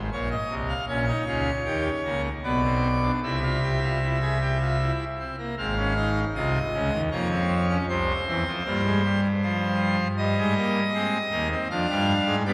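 In a straight 3/4 at 78 BPM, this short excerpt from a serious, solemn baroque-style three-part fugue in F minor (tuned to A4 = 445 Hz) features a solo pipe organ on full organ with mixtures, majestic and brilliant in its romantic voicing, up front and spanning Ab1 to F5, set in a lingering church reverb as the music passes from its opening section into a second one at 5.6 seconds, moving through chords such as Bbm, C7 and Ddim/F.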